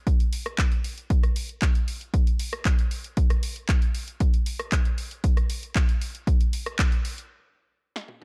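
A straight 4/4 nu-disco groove at 116 BPM opens this short cut from a longer piece, with a punchy, tape-warm electronic kick sitting up front from 0.1 seconds and dropping out at 6.9 seconds. Alongside it, a layered house drum kit carries handclaps, hi-hat, rim click, snare and toms, set lower in the mix, with high-pass filtering thinning the hats, snare and toms. The snare has its own punch, while the hats sound warm. The whole passage works as a build-up with a cosmic, groovy mood, heading into a stop from 7.3 seconds and a drum fill at 8.0 seconds. The sound is dry and gritty, with a digital ambience around the drums.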